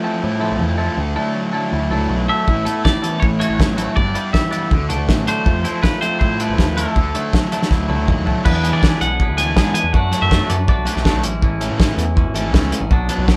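Indie rock at 161 BPM with a carefree, upbeat lift, this excerpt opens on a fuzzy guitar riff laced with a bright, twangy clean guitar riff, joined almost at once by a growling overdriven picked bass, while a second twangy guitar carries the melody from 2.3 to 11.0 seconds. A cloth-damped, thuddy drum kit with dark cymbals, a fat snare and a tight kick sits up front from 2.5 seconds, and a fill at 7.7 seconds leads into a new section built on an E7 chord. The band sounds like it is playing live together in one room, with moderate studio reverb.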